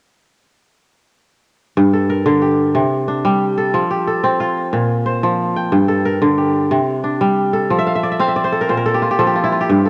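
A bright, ringing kora sits up front, its crisp fingerpicked arpeggios spanning G2 to G5 in this hypnotic, reflective West African traditional piece in G dorian at 121 BPM in 12/8, circling Gm, C5, F and Bb5 from 1.8 s through a lush hall reverb, captured as a home recording on cassette, then adding a fill at 7.8 s before the cut from a longer piece ends at 9.9 s.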